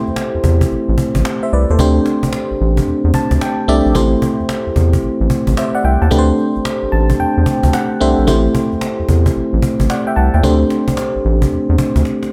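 Set in a small room with light reverb, this short excerpt of slick, punchy R&B in a new jack swing style moves at 111 BPM in 4/4, with a 64% swing on the sixteenths and a home in A dorian. An up-front FM electric piano carries the accompaniment from A3 to A5, its glassy, bell-like attack decaying into a full-bodied tone thickened by chorus. A round analog bass sits low and deep between A1 and E2, mellow and sustained. A snappy acoustic cajon with snares supplies the drums at a lower level, catching the live room around it. The harmony alternates between Am7 and D7sus4 throughout, while the electric piano adds fills at 2.9 and 6.7 seconds and the cajon slips in a brief fill at 12.1 seconds.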